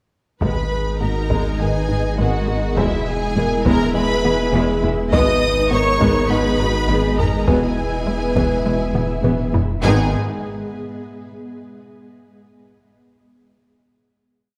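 At 0.4 s a vast, futuristic hybrid orchestral and electronic film cue in G# minor opens at 102 BPM, with smooth violins singing the melody doubled an octave below by a second violin line, shadowy violas in a driving ostinato, a distant horn counter-melody and punchy, very quiet trombone chords. Dark cellos and rich double basses push a quiet bass ostinato over a deep, saturated sub bass drone, while a woody, wave-folded pluck pulses in arpeggios, background taiko pound a hard-stick ostinato, and an ethereal, airy pad with chorus and tremolo drifts in at 1.1 s. Bathed in a wet concert-hall reverb, the theme alternates G# minor and E until a taiko fill at 9.0 s leads into a final G# minor chord at 9.8 s.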